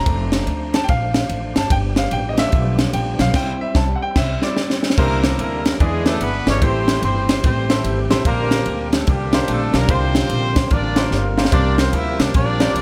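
A clear concert grand piano with a deep low end takes the spotlight for the first 5.0 seconds of this reverent, hopeful uptempo gospel piece, which has a swung feel and is cut from a longer performance. Underneath, an overdriven tonewheel organ holds full, thick chords in the background through a fast rotary speaker and chorus vibrato. A woody, thumpy pizzicato upright bass anchors the low register, and an up-front acoustic fusion kit brings a punchy kick, a high-tuned snare, ride and crash, all saturated and pumping in a small room. The band hits an accent and the drums play a fill before a warm horn section takes the melody at 5.0 seconds, loose and jazzy with light vibrato, a smooth top and octave doubling. The harmony moves through rich extended and suspended chords, a second drum fill arrives at 11.1 seconds, and light studio reverb gives the mix a polished sense of space.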